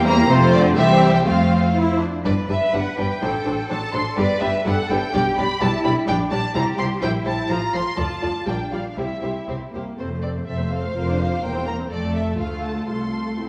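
Quick classical-period string orchestra music in 2/4 at 124 BPM, lively and cheerful, moving with a rubato feel from G major into F major at 6.1 s. An up-front violin section carries a smooth, warm melody with vibrato, while a more distant, focused violin section plays a second line and a lush viola section fills in the accompaniment. A rich, even cello section and a double bass section sitting forward in the mix share the bass, all set in a wet scoring-stage reverb with a touch of small-room ambience.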